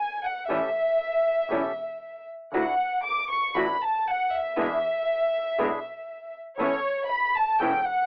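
Tense and melancholic, this short rubato tango fragment opens with an intimate chamber violin section, bowed sul tasto with light vibrato and a soft attack, which carries the second line up front from 0.0 seconds. At 0.5 seconds a small, fingerpicked nylon-string guitar, reedy, dark bandoneon stabs and a distant, focused bowed double bass join over A7, Dadd9, E7 and Aadd9. The whole has the narrow, telephone-like colour of a home cassette recording, set in a moderate booth ambience.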